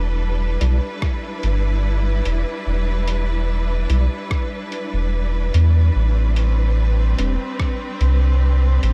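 A dry-sounding mix carries this meditative, hazy ambient dub fragment at 73 BPM, where a round, soft sub bass sits up front beneath lush, biting bowed strings holding Em7 before moving to Am11 at 6.0 s, a very quiet, flute-like tonewheel organ with slow rotary speaker adds stabs from 0.6 s, a muffled, pitched-down sampler-style kit of hi-hat and rim click trails dub echo, and a deep, layered electronic kick enters up front at 1.0 s.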